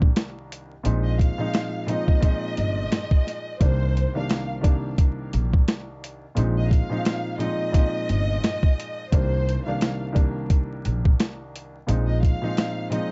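A compressed, pitched-down boom-bap sampler kit with a thumpy kick and high-tuned snare opens this tough, gritty hip-hop cut alongside a woody, growly pizzicato upright bass up front and a mellow, worn grand piano with audible action noise bathed in plate reverb, while from 1.0 s a distant, bowed violin section carries the melody with vibrato and portamento, all under a dark production marked by vinyl crackle and light reverb.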